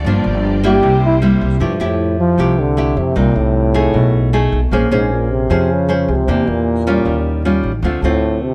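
Sophisticated and breezy, this bossa nova excerpt in F major moves at 154 BPM in a straight 4/4. A fingerpicked nylon-string guitar and a woody, growly pizzicato upright bass sit up front, while a bowed string section adds sustained chords only until 1.6 seconds. A dark, jazz-style trombone enters at 0.7 seconds with a soft attack, scooped notes and vibrato, carrying the melody over rich extended chords in a light reverb.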